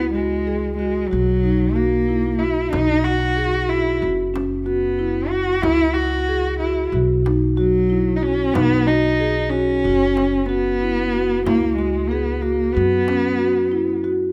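Recorded with close, detailed microphones in a moderate recital hall with a 1.7-second reverb, this cut from a longer contemporary chamber piece sounds intimate yet airy. A dark, bowed cello carries the melody up front: a single expressive player, singing with vibrato and portamento. Beneath it, a pizzicato upright bass with steel strings anchors the low end with an acoustic, woody tone. A marimba played with soft mallets on rosewood bars spins mellow, round arpeggios and sits as the loudest part, its sound close, dry and full. A frame drum struck with hard hands enters at 2.7 seconds and stays in the background until 13.4 seconds, its tone warm, close and dry. The mood is shimmering and playful, with the uneven 9/8 metre moving through Bmaj7, F#sus4 and C#m harmonies.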